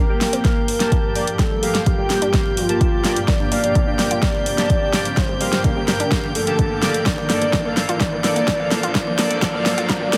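A straight 4/4 groove of punchy electronic kick and an up-front deep house kit with hi-hat and fat snare, running as a drum fill throughout, drives this driving, expansive progressive house build-up cut from a longer piece, where a dark, round octave-layered synth lead carries the melody with chorus, cassette-tape colour and dub echo, a nasal analog pluck arpeggiates through a filter sweep in the background, smooth supersaw stabs ride their own filter sweep, a shimmering ambient pad and a glassy texture of drifting overtones hang behind them, the lead, pad, pluck, supersaw and texture all pumping to the sidechain, and an electronic riser enters at 2.2 s beneath a lush hall reverb.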